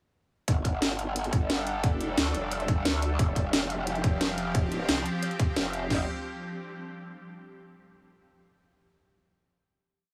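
Dry, up-front and futuristic, this short, tense piece of dark technical drum and bass launches straight into a drop at 0.5 seconds and closes on a final chord from 5.9 seconds. Two layered electronic drum kits drive it, both overdriven: one carries a tight kick, floor tom, cracking snare and crash in a broken-beat pattern, while the other adds bright closed hats, rim clicks and more snare in tight, technical figures. Underneath, a growl bass snarls in the low register, detuned and saturated through a formant filter and chorus, its modulated phrases wobbling at changing speeds and pumping with sidechain compression. A swarming drone enters at 1.0 second, holding sustained, granular chords that evolve behind the beat, softened by its own reverb and also pumping with sidechain compression. The harmony moves from G5 to F5 and back to G5, and the bass and drone ring out into the closing chord.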